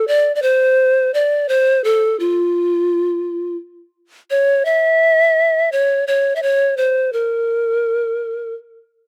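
A reedy bamboo pan flute carries this brief Andean folk excerpt alone from 0.0 to 8.5 s, its airy tone marked by a breathy chiff at the soft start of each note and a gentle vibrato. The straight 4/4 feel gives the mood a festive lift shaded with melancholy. Recorded outdoors and close-miked, the flute sits up front in a dry, open-air sound.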